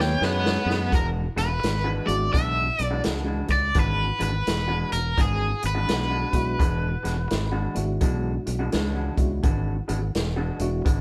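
A drum fill from a punchy vintage kit opens this soulful, rollicking electric blues shuffle at 84 BPM in E mixolydian, with a brief, tight stab from a mellow saxophone section that ends by 0.8 seconds, as the harmony moves from Badd9 to E9. An up-front, bright overdriven stack guitar sings the melody with tremolo until 7.7 seconds, over a twangy, slightly broken-up lo-fi guitar riff and a warm, direct fingered electric bass. From 2.1 seconds, a barky, reedy electric piano adds accompaniment with light overdrive and fast tremolo, the whole band sounding live in one room with light reverb.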